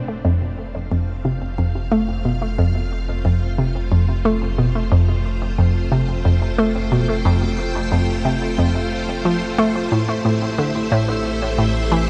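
Ambient, sequencer-driven space music at 90 BPM in 4/4, hypnotic and expansive, this short cut from a longer piece moves from F to Am7 at 9.9 seconds. A hollow, bouncy square-wave pluck sits up front playing a riff, detuned with a noise layer and treated with chorus, phaser and tape echo, while a round, deep analog bass sustains low beneath it. A lush, vintage string machine fades in across the whole passage with ensemble chorus on its sustained chords, all bathed in a huge ambient reverb with a long 7.8-second tail.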